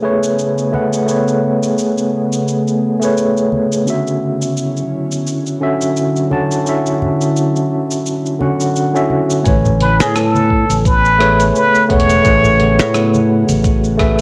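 A relaxed 86 BPM groove in 4/4 with swung sixteenths opens this blissful sunset chillout excerpt in A major, moving from Amaj9 to Dmaj9. An overdriven, gritty tine electric piano with fast tremolo and analog delay sits up front over an ethereal, slow-attack pad with ensemble chorus, while a dusty, tape-soaked soul kit of hi-hat, rim click and shaker and low-tuned background congas keep time. At 9.5 seconds a bright, growly fingered electric bass and a thumpy electronic kick arrive, and at 9.8 seconds a distant, roomy plunger-muted trumpet takes a short jazz solo with wah-wah, vibrato and scooped notes, all colored by cassette tape and a wet studio reverb.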